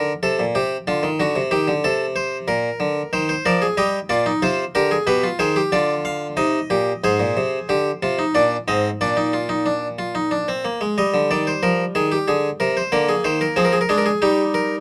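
In a straight 3/4 at 92 BPM, this contemplative yet driving cut from a longer baroque-style three-part fugue sets a solo harpsichord, bright, plucked and French in style on one set of strings, up front in a close, detailed and nearly dry sound, ranging from Ab2 to F5 as it moves from C minor into Eb major at 7.0 s and settles on an Eb/G chord at 14.2 s.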